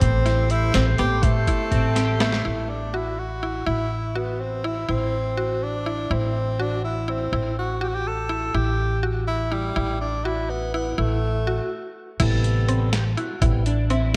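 A clear, up-front tenor saxophone with tape echo carries the melody through the first 12.0 seconds of this tense, driving progressive instrumental in 5/8 at 246 BPM in A dorian, over a woody pizzicato upright bass, muffled, pitched-down lo-fi sampler-style drums with a thumpy kick, bright chorused mallet-like synth pluck arpeggios and brief touches of slightly broken-up electric guitar, while a tonewheel organ with key click and slow rotary speaker opens the piece and returns after a stop for a short solo from 12.2 seconds, the whole mix soaked in a dreamy hall reverb.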